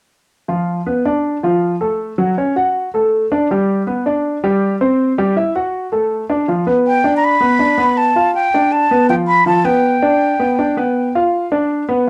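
A home cassette recording in a small, reverberant room gives this lively, danceable jazz excerpt an intimate, close feel. A concert grand piano with audible action noise, deep bass and short sustain plays up-front chordal accompaniment from 0.5 s to 12.1 s, moving through changes such as F#m, Gadd11 and C/G before landing on G7. A breathy, soft-attacked concert flute with a straight tone enters close and forward at 6.9 s, carrying the high melody until 11.1 s.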